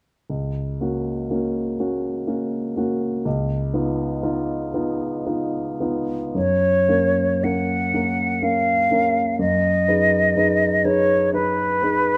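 Warm and serene, this short excerpt from a longer romantic classical piece is a duo for flute and grand piano in triple metre, its beats unevenly stretched with rubato. The dark concert grand piano opens alone at 0.3 seconds as accompaniment, its mellow, natural tone anchored by a deep bass register. At 6.3 seconds the concert flute enters with the melody, sitting a little louder than the piano and sounding airy and expressive, shaped with vibrato and clearly tongued notes. Its entrance marks a shift into a second section, where the harmony settles onto an F# chord before moving to G#m7 over F#. Close, detailed microphones capture both instruments up front, while a moderate recital hall reverb lends a soft sense of space.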